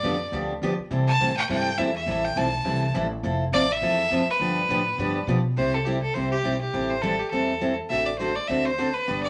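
A wet studio reverb gives this short excerpt of playful country western swing a lively room sound, with fiddle and dreadnought acoustic guitar sitting up front at a swinging 206 BPM in C major. A single bowed fiddle carries the melody with a bright, intense tone and light vibrato, while the picked guitar adds full-bodied accompaniment with audible finger squeak over the woody, thumpy pizzicato of an upright bass. The harmony moves from G7 through Am7 and Fmaj7 before a second section begins at 5.6 s and heads toward D7/A.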